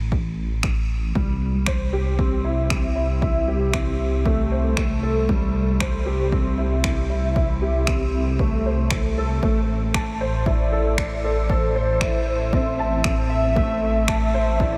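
Bathed in a huge, dreamy ambient reverb, this short passage cut from a longer electronica piece for piano and strings feels intimate and cinematic at 116 BPM in a straight 4/4. A deep, rumbling detuned saw bass, dark and beating with tube saturation and sidechain pumping, sits up front from the first moment, joined almost at once by a punchy, layered electronic kick that was re-recorded in a small room. Overdriven electronic finger snaps arrive at 0.6 seconds, and at 1.2 seconds a smooth, vintage grand piano takes up the riff, its tone spread with ensemble chorus, analog delay and shimmer reverb as the harmony settles on C6 before moving to A minor. At 10.5 seconds a velvety synth lead enters with the melody, a unison sawtooth and wave-folded triangle voice carrying vibrato, a filter sweep, chorus, delay and shimmer reverb.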